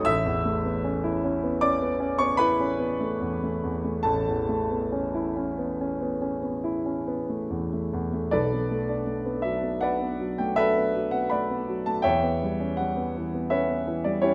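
Closely miked and detailed in a moderate recital-hall reverb, this nocturnal, wistful excerpt of impressionist classical solo piano in B minor drifts in a rubato 5/4 at 69-83 BPM, the natural, up-front grand piano spanning low bass to high treble as its harmony moves from Aadd9 into Bm7 at 8.3 seconds and Em6 at 12.0 seconds.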